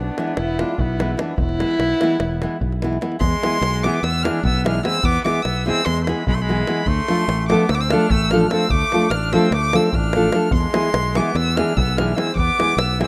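A single dark, woody violin carries the melody up front with bowed vibrato, while a distant, roomy trumpet plays a classical-style second line beneath it with light vibrato in this bittersweet, fiery Balkan wedding-band piece in E phrygian dominant, driven at 295 BPM in eighths through a straight 9/8. A fingerpicked nylon-string guitar with a deep classical tone and a direct, amped fingered electric bass sit close in the mix, and a dry, booming davul sets the percussion. The harmony rests on E, shifts to Dm at 6.9 seconds and returns to E at 10.5 seconds, all within a rough home demo mix with light reverb and studio ambience, cut from a longer piece.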